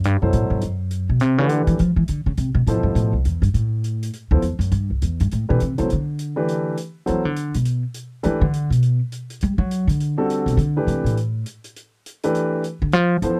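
An upright bass solo opens this modal jazz excerpt at once, its woody, thumpy pizzicato tone sitting up front over a natural-sounding acoustic hi-hat, with a dark grand piano joining at 0.2 seconds. The tempo is a brisk 205 BPM in 4/4 with a swung eighth-note feel, and the mood is searching and open. The bass carries the lead for the whole 13.4 seconds, ranging from C2 to G3 on steel strings. Behind it, the piano accompanies in a mellow, smooth vintage voice with long sustain, shifting between Gmaj9 and Fmaj9 harmonies. The hi-hat sits far back in the balance, while the dry, close 1970s-style studio sound, with little reverb, keeps the bass and piano intimate and present.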